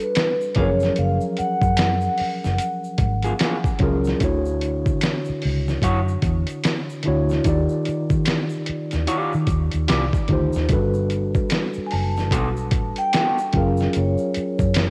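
This short cut from a longer piece has the lo-fi feel of a home recording on cassette tape, with light digital ambience around a relaxed, soulful R&B and neo-soul groove that swings its sixteenths. Up front, a sampler-style drum kit hits gritty and overdriven, with a thumpy kick, fat snare and hi-hat that sound compressed and re-recorded in a small room, while a dark, round, foam-muted electric bass sits alongside it. A mellow, clean tine electric piano carries the accompaniment throughout over lush major-ninth chords, and an electric guitar through a small old amp adds a slightly broken-up, picked second line bathed in spring reverb until 13.4 seconds. A vibraphone with soft mallets sings the melody in an airy, ringing voice with slow motor vibrato, falling away early and returning at 11.9 seconds. Far in the background, a band-limited, vintage-sounding egg shaker and finger snaps keep a faint pulse.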